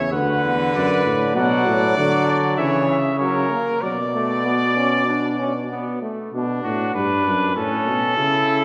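Heard from further back in a wet scoring-stage room with a 2.0-second reverb, this solemn, contemplative brass canzona in B minor moves at 98 BPM in straight 4/4. A vintage-toned trumpet carries the melody up front while a second trumpet, smooth on top with light vibrato, adds a second line. A mellow bass trombone, also with light vibrato, holds the bass, and a brilliant, distant trombone supplies accompaniment until it stops at 6.3 s. The harmony passes from Bm through C#m and F#/C# back to Bm before reaching A near the close of this short passage cut from a longer piece.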